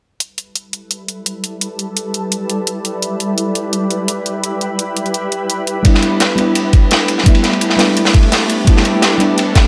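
Liquid drum and bass at 170 BPM in G major, lush and uplifting, opens with overdriven, bright electronic hi-hats and a shimmering, ethereal ambient pad whose slow-attack sustained chords carry chorus, built-in reverb, sidechain pumping and a filter sweep, moving from G6 to A9sus4 at 5.7 seconds. At 5.8 seconds a soft, round, warbling FM electric piano adds chorused accompaniment with dub echo, and at 5.9 seconds a knocking, overdriven electronic kick sits up front beside a gritty, saturated breakbeat kit with dark cymbals, a medium-tuned snare and a rolled-off top. A moderate hall reverb and small room ambience surround this short cut from a longer piece.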